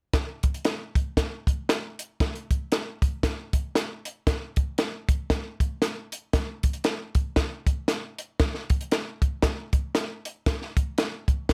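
Soul groove at 116 BPM in 4/4 with a swung eighth-note feel, carried by a compact cocktail drum kit of hi-hat, kick and high-tuned snare. It sounds dark, smooth and up front in a small room with light reverb, with a tight kick, and the uplifting, joyful excerpt runs from 0.1 to 11.5 seconds.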